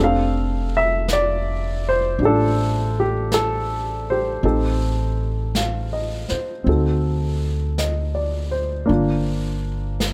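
Romantic and late-night, this slow jazz ballad excerpt in F major moves at 54 BPM with a gentle swing, as an intimate baby grand piano with audible action noise and an up-front, woody pizzicato upright bass carry the harmony through F69, Am7b5, D7b9 and Gm7, while a jazz brush kit of snare and hi-hat enters softly in the background at 1.1 seconds, all captured dry and close in fine detail.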